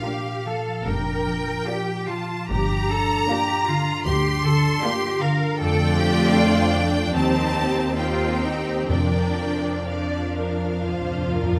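The recording sits in a wet recital hall, where the reverb gives this serene passage of slow romantic orchestral music a lingering bloom, cut from a longer movement in 4/4 with a rubato feel. A close, clear violin section carries the lush melody high above with vibrato, while a second, rich violin section sings its own line beneath. A concert harp rings out warm, thumb-plucked arpeggios, and a distant viola section fills in the accompaniment with focused, bowed tone. The cello section, smooth at the top, shares the bass with a far-off double bass section whose light vibrato keeps the lowest register even. Timpani played with medium mallets on plastic heads mark the opening moment, return at 8.9 s, and round things off with a fill from 10.8 s as the harmony settles onto a closing F5.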